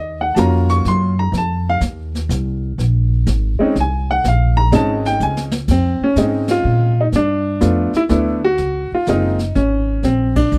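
A smoky, late-night jazz piano trio in Bb minor opens with an up-front upright piano carrying the melody over pizzicato upright bass, which has a growly, thumpy tone, with brushed drums entering at 0.4 seconds in a swung 3/4 at 124 BPM. The woody, short-sustained piano takes a solo through the first section, and a drum fill from 5.2 seconds leads into a second passage marked by band accents, as the harmony moves through rich ninth and eleventh chords to land on Bb. The kit sits lower in the mix, with dark cymbals, a medium-tuned snare and a boomy kick, all captured in a dry, close 1970s-style studio sound.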